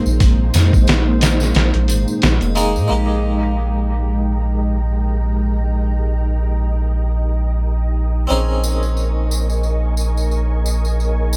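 Dark and melancholic, this trip hop fragment opens on warbling string-machine cellos, coloured by ensemble chorus and 12-bit sampler grit, joined almost at once by a deep, round dub sub bass and a compressed, pitched-down sampler drum kit with a thumpy kick. The kit drops out by 2.7 s, leaving the bass and strings to carry the chords, while a dry, close-miked harpsichord with tremolo and tape echo enters at 2.6 s and tambourine and triangle return at 8.3 s.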